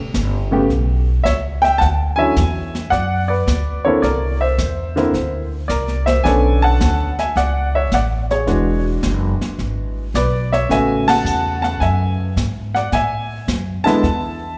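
A pizzicato upright bass with a woody tone opens this sophisticated, warm swinging jazz piano trio fragment at 108 BPM in A major, joined by a brushed drum kit with dark cymbals and a boomy kick and, from 0.5 seconds, a polished, present upright piano carrying the melody over rich extended chords, the trio set in a lush recital-hall reverb before the band hits a shared accent at 11.0 seconds.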